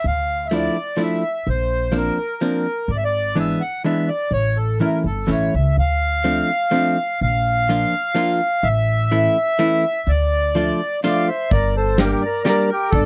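A swaying three-beat musette waltz, nostalgic and bittersweet, with a reedy, close-miked accordion carrying the melody up front over woody pizzicato upright bass on gut strings and a dark, clean hollow-body archtop guitar picking the accompaniment. Near the close, a mellow second accordion with a rich tone-chamber sound joins at 11.0 seconds, and a soft brush drum kit with a tight kick enters at 11.5 seconds as the music moves into a new section. The sound is dry and intimate, like a 1970s-style studio recording touched with light reverb, cut from a longer piece.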